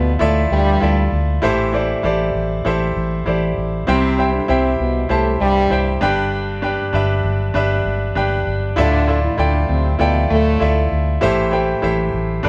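This piano-driven pop excerpt opens with everything sounding at once: a clear concert grand piano carrying the accompaniment, a mellow French horn section on a second line, and a vintage, foam-muted fingered electric bass underneath. The mood is hopeful, set at a steady 98 BPM in a straight 4/4 feel, with the chords moving through Dmadd9, Am7, C and G before returning to Dmadd9 and Am7. The piano sits up front with a smooth tone and deep low end, spanning from G2 up to A5, while the bass stays low, dark, round and punchy in its amped sound. The horns play as a tight, classical-style section and drop out at 10.9 seconds, leaving piano and bass to carry on until 12.5 seconds. The band sounds as if it is playing live together in a stone room, with a moderate reverb that lingers about 1.2 seconds.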